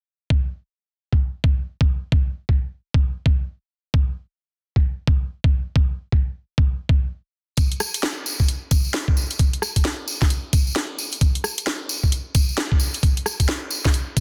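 Moody and soulful, this UK garage excerpt swings at 132 BPM in 4/4. A gritty, pitched-down, thumpy kick sits up front from 0.3 seconds, joined at 7.6 seconds by an overdriven, layered house kit of cracking snare, rim click and bright hats, and a jingly tambourine heard distant in a large room, all in a dense, heavily limited modern master with little reverb.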